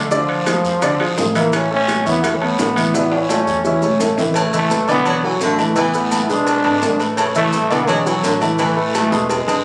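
Salsa at a brisk 170 BPM in A major, this joyful, danceable passage is taken from a longer piece and moves with a straight 4/4 feel. A growling trombone carries the melody up front, its gritty, raspy tone shaded with vibrato and scooped notes, while a warm, present baby grand piano supplies the accompaniment and a dark, woody upright bass plucks its gut strings in the background. The percussion fills out the groove: ringing, band-limited timbales and agogo bells sit loudest, with distant, high-tuned congas, tight bongos and cowbell played very quietly, a raspy guiro and close, grainy maracas. At 4.4 seconds a clear, smooth-topped baritone saxophone enters with a second line, and drum fills mark the passage around 2.9 seconds and again near the end. The chords move between Bb7, Aadd9, Bm7 and Asus2, heard through moderate studio ambience with the slightly roomy character of a phone recording.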